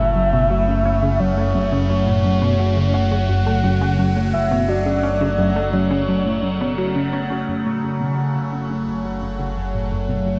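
A tight, driving sequenced synth riff with chorus, phaser, cassette tape grit and tape echo pulses at 86 BPM in straight 4/4 through this hypnotic, expansive ambient space-music excerpt in F# minor on an F#m7 chord, anchored by a fat, saturated analog bass on F#1 and a bright, morphing wavetable pad up front, while a soft, round octave-layered lead with chorus and tape echo carries the melody until 7.1 s, a filter sweep moves across the synth arpeggio from 7.5 s, a mellow concert harp rings arpeggios in the background, and a very quiet, twinkling granular shimmer enters at 8.3 s, all inside a huge reverb.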